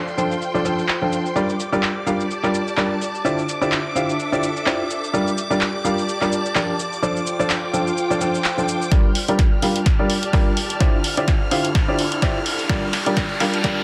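Shimmering string-machine violins and a veiled, con sordino studio string section open this energetic, soulful piano house excerpt, soon joined by a woody, slightly detuned upright piano riff with 12-bit sampler grit, digital delay and sidechain pumping, plus a punchy analog drum machine of cabasa, handclaps, hi-hat and snare, before an up-front electronic kick enters at 8.9 seconds to launch a build-up with a drum fill, a filter sweep on the piano and a further filter sweep, crowned by a background riser from 10.3 seconds.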